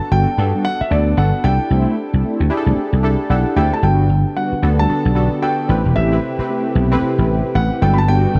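Bouncy and upbeat, this R&B excerpt swings at 113 BPM in G major, with a growly, punchy slap bass up front under a concert grand piano melody, round detuned analog keys with chorus, dark background synth brass stabs, and a lush, warbling unison pad that joins at 3.8 seconds, all set in light reverb with a dark production.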